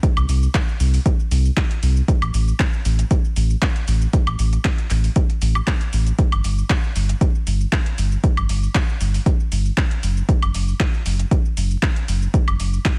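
A punchy, up-front electronic kick, roughened by vintage 12-bit sampler grit and re-recorded in a small room, drives this smooth, late-night deep house excerpt at 117 BPM in 4/4, with a light 53% swing on the sixteenths and tuning set to A4 = 438 Hz. A deep sine sub bass doubled at the octave sits up front between F#1 and C2, its fast attack and sustained notes thickened by tube saturation and pumping through sidechain compression from 0.2 to 12.8 seconds. Further back, a layered kit of handclaps, metallic hi-hats, shaker and woodblock carries a tape-warm, gritty sampler colour, all set in a digital ambience with vinyl crackle and a dense, heavily limited modern master across this 13-second cut from a longer piece.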